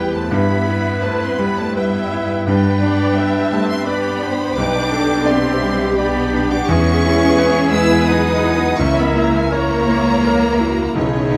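A clear concert grand piano leads this passionate, tragic classical passage up front, carrying the melody with an open, deep bass and short sustain, while a symphonic violin section shares the melody high above with smooth, even vibrato. Beneath them, a lush string body sits in the background: a studio violin section and a flute ensemble of pure tone and crisp attack trace second lines, and a viola section adds expressive portamento in its accompaniment. A roomy, distant clarinet and a punchy oboe weave quiet solo lines, while rich, focused cellos and smooth, even double basses anchor the bass. At 0.3 seconds a mellow, very quiet French horn section enters with tight sustained chords and light vibrato. The rubato triple metre moves at 84 BPM through harmonies from Em/G to G and E6 before closing on A#dim/C#, all in a moderate scoring-stage reverb captured by close, detailed microphones, and the cut from a longer piece runs 11.4 seconds.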